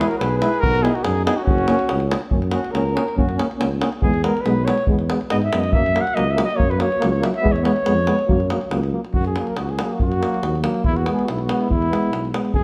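A roomy, up-front flugelhorn takes a solo from 2.3 to 9.1 seconds in this wild, festive Balkan brass band excerpt in 2/4, with a dark, smooth-topped trumpet carrying the melody at the start and again from 9.1 seconds, a punchy, bright trombone and a background euphonium filling out the accompaniment, a mellow tuba holding the bass, a deep, saturated, compressed davul sitting up front, and the brass playing in a classical style with light vibrato inside a moderate recital hall reverb.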